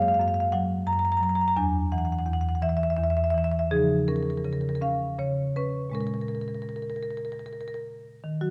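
Unfolding in a rubato 6/8, this hypnotic, reflective passage from a longer contemporary classical piece for solo marimba has woody rosewood bars struck with medium hard mallets, sounding dark, smooth and up front as they move through Gbmaj9, Esus2, Dbadd9 and Bbm7 across a range from E2 to Bb5, set in a moderate concert hall reverb.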